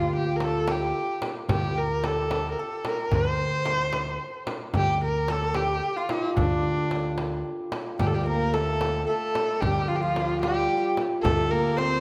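Persian modal ensemble music in D dastgah shur, hypnotic and longing, moving at 74 BPM in a straight 6/8. Up front, a rich bowed kamancheh carries the melody with vibrato and portamento, while a shimmering hammered santur plays a second line over woody, growly pizzicato upright bass. A bright frame drum and a very quiet, deep tombak enter at 0.4 s, a warm close-miked tenor saxophone adds a jazz-style line from 8.0 s, and the whole cut from a longer piece sits in a spacious recital hall reverb.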